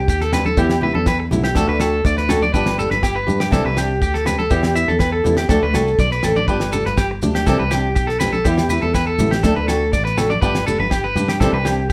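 A twangy, slightly broken-up electric guitar sits up front, picking warm arpeggios between G4 and E5 through a harmonic tremolo across this sunny, danceable highlife excerpt in G major at 122 BPM. Beneath it, a fingered electric bass with a round, foam-muted tone holds the low end from G1 to G2, while a dry, damped 70s drum kit with a fat snare and tight kick keeps a straight 4/4 pulse. A fingerpicked flamenco guitar adds acoustic accompaniment from E3 to G4, its finger squeaks audible in the texture. Further back, congas with a thick skin and soft hands, ringing agogo bells and grainy, mellow maracas fill out the percussion. The band plays live in one room with moderate studio reverb, opening on Csus2 and then cycling through Em, D, G and Cadd9 across the 11.9 seconds.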